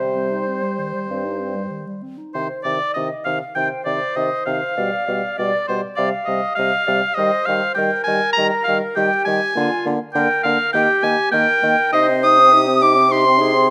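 A quick classical-period movement for wind quintet in C minor at 100 BPM, cheerful and spirited with a rubato feel: the bright oboe sits up front with a lightly vibrato second line, the pure, softly attacked flute carries the expressive vibrato melody from further back, and the clear clarinet and distant, roomy French horn supply accompaniment over the warm bassoon bass, captured by close, detailed microphones in a moderate recital hall reverb.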